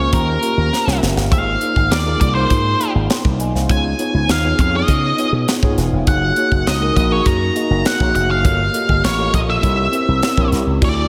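Nocturnal and slick, this polished 1980s jazz-funk pop excerpt in straight 4/4 sets a dark, fuzzed octave lead guitar up front, carrying the melody through tape echo over a worn, slightly out-of-tune tine electric piano that is lightly overdriven and washed in analog chorus. Beneath them, a punchy slap bass pops brightly through its envelope filter while a dry, tight funk kit with a high-tuned snare sits forward and drops a fill at 0.7 seconds. The whole mix is soaked in dreamy plate reverb as the harmony glides from Eb13 through Ab69, Db9 and Gb69 before turning to Gm7b5 and C7b9.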